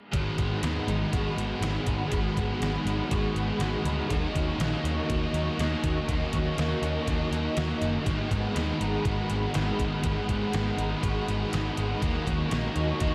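Shoegaze and dream pop rock in G# minor at 121 BPM, this 13-second cut from a longer piece feels dreamy and brooding, moving between G#m7 and D#m7 chords. A thick, dark fuzz guitar with distortion and analog chorus carries the riff alongside a biting overdriven guitar whose picked line is colored by reverse reverb. Beneath them, a lo-fi, slightly broken-up electric guitar through a small old amp plays compressed arpeggios in the background, bathed in lush chorus and tape echo. A hollow, flute-like pad with a slow attack and warbling, detuned character holds sustained chords high above, while a round, punchy foam-muted bass anchors the low end. A detuned 8-bit drum machine with a thumpy kick, medium-tuned snare and hi-hat, re-recorded in a large room, drives the pulse, and the whole mix is soaked in a huge ambient reverb with an 8.0-second decay.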